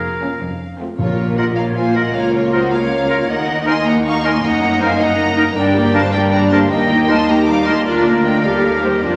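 Classical symphonic music in a restless, stormy Bb minor at 104 BPM in 6/8, this fast, dramatic romantic passage from a longer piece sets a focused, vibrato-rich violin melody over rich cellos and background double basses, with a second violin line, lush violas, mellow background French horns holding chords, and clear solo oboe and very quiet clarinet lines, while a pure, close-miked flute section joins at 1.0 s alongside a brief, articulate hard-mallet timpani entry ending at 1.5 s, all set in a scoring-stage reverb.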